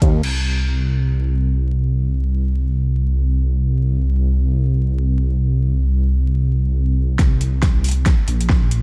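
A dark, warm production with vinyl crackle and little reverb frames this heavy, brooding deep dubstep fragment in C minor, moving in free time. A deep, rumbling detuned sawtooth bass sits up front throughout, saturated yet mellow, its sustained unison tones beating between Bb1 and Eb2. A layered electronic kick and a tape-warm drum kit with a fat snare, metallic hi-hats and crash cymbal sound briefly at the opening in a small room, then return at 7.2 seconds for a drum fill that builds until the cut at 8.8 seconds.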